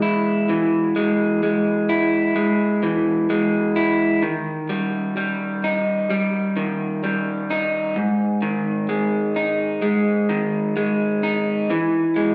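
A lone electric guitar, played through a small old amp, carries this short rock fragment with a slightly broken-up, lo-fi tone that sits up front, picked and compressed. Its euphoric, cinematic mood comes through as the harmony moves from E to D#, then to G#5, and back to E, staying between G#2 and E4. A wet recital-hall reverb gives the part a spacious church-like bloom until the clip, cut from a longer piece, ends at 12.3 seconds.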